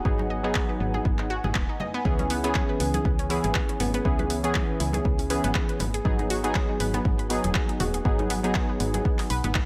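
Detuned sawtooth analog key stabs with chorus, delay and sidechain pumping open this late-night deep house cut at 120 BPM in C# minor over a dark, warbling tape-like pad in the background, soon joined by a bright, chorused analog pluck arpeggio with tape echo, a round, woody FM bass, a deep, up-front electronic kick, very quiet ringing congas, and from 0.5 seconds an overdriven analog drum machine adding handclaps and a hi-hat, all moving through G#m7 and C#m7 in light digital ambience.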